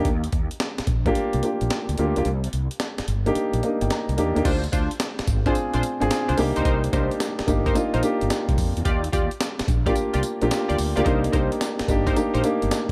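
New jack swing R&B in C minor at 109 BPM, slick and punchy with a swung sixteenth feel, built on a mellow baby grand piano with audible action noise, a round fretless bass thickened by ensemble chorus, and a gritty, compressed breakbeat kit whose thumpy kick, snare, hi-hat, tambourine and crash sit in gated reverb. The kick drops out from 2.3 to 4.5 seconds, with the piano playing a fill from 3.4 seconds, and at 4.4 seconds a detuned, warbling sawtooth polysynth enters with chorused stabs and a filter sweep as the chords move through Dm7b5, Cm7, Ebmaj9 and back to Cm7. This clip, taken from a longer piece, sits in a digital ambience.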